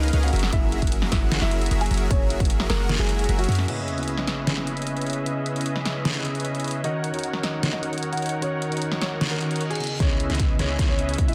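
Bittersweet and emotional, this future bass excerpt moves at 152 BPM in a half-time feel, centred on C# dorian and moving through F#9, C#m9 and D#m7 chords. It opens on a drop, where huge, lush, detuned supersaw chords carry a bright riff through a cassette-tape haze, a low-pass filter and digital delay, pumping against the sidechain. An intimate baby grand piano sings the melody with its action noise audible, while a thumb-plucked concert harp rings out arpeggios in the background and a deep, boomy 808-style bass sits up front. A dubstep drum kit with a deep snare, hi-hat and crash runs throughout, joined by a punchy, layered electronic kick re-recorded in a large room. At 3.7 seconds the kick and bass have dropped away for an impact and sub drop, and a mellow, clean tine electric piano with ensemble chorus takes up the accompaniment. A reverse cymbal leads into a build-up at 10.0 seconds, where the kick and bass return beneath a drum fill and a filter sweep on the supersaws, all within a dense, heavily limited modern master with light reverb.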